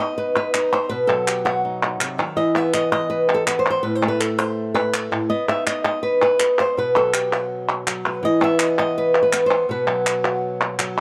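A fingerpicked flamenco guitar carries the melody from the first moment, its acoustic, warm tone placed up front and reaching from A2 up to E5. Crisp palmas hand claps join at 0.4 seconds, their vintage, band-limited sound sitting close alongside the guitar. The piece moves at 164 BPM in a straight 4/4, set in B phrygian dominant, with a mournful, dramatic character. Harmony shifts from B to Em, drops away briefly to a chordless passage, then returns to B before closing on E5 and B5 chords. Close, detailed microphones and a light reverb give the recording an intimate presence, and this short cut from a longer work runs about 11 seconds.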